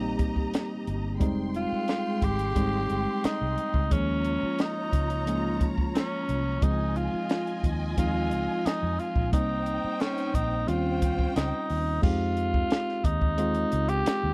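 Lush 1970s-style soul in F minor at 89 BPM, this smooth, bittersweet passage is cut from a longer piece and settles into a straight 4/4 groove. A compact cocktail drum kit sits up front with a punchy kick, a high-tuned snare, hi-hat and crash cymbal, its sound dark with a rolled-off top, while a vintage muted fingered electric bass adds a round, foam-muted low end. A worn, slightly out-of-tune tine electric piano played through a combo amp carries the accompaniment, moving through chords such as Fm9, Eb9sus4 and Dbmaj9. A bowed studio string section plays a second line with vibrato, portamento and a slapback echo until 12.0 s, and a raspy, gritty tenor saxophone enters at 1.6 s to take the melody in an up-front, pop-style solo. The dry, close recording carries a small room ambience, giving the whole a vintage studio intimacy.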